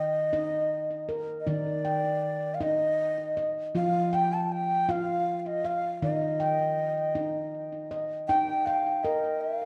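In a slow, straight 6/8 at 53 BPM in Eb major, tuned to A4 = 438 Hz, this dreamy, calm world meditation fragment from a longer piece sets a breathy, bright bamboo bass bansuri, close-miked with a crisp attack and an unsteady straight tone, carrying the melody over a ringing nitrided-steel handpan played with the fingertips in airy arpeggios touched with delay, both up front in a dark production bathed in wet recital hall reverb, as the harmony moves from Eb to F7sus2 at 3.7 seconds and returns to Eb at 6.0 seconds.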